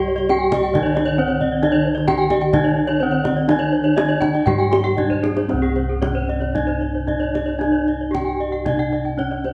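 Ceremonial and brilliant, this Balinese gamelan passage in C pelog moves in a straight 4/4 at 114-134 BPM and is cut from a longer piece. An up-front, band-limited bronze metallophone struck with a wooden mallet carries the vintage-sounding melody, while a dark, smooth metallophone played with a horn mallet gives accompaniment until 5.5 seconds, and two airy, bright metallophones spin ringing arpeggios with shimmering beats from their paired tuning. Round, beating bossed gongs hold the bass, and a tight kendang with a small-room sound drives the rhythm, marking the move into a new section with a drum fill at 5.0 seconds, all set in a moderate recital-hall reverb.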